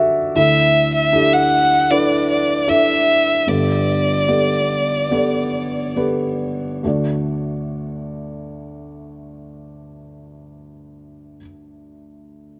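This tender, heartfelt pop excerpt in D major moves at a gentle 66-78 BPM and slows over its opening seconds, as a felt-muted upright piano plays a soft, mellow, intimate accompaniment with audible action noise and a vintage character throughout the 12.6 seconds. From 0.4 to 6.0 seconds a single up-front bowed violin carries the melody with warm, expressive vibrato, portamento and a smooth top, touched by analog delay. Moderate spring reverb surrounds the recording as the harmony moves from Dsus2 to Gadd9 and settles on D at 6.8 seconds.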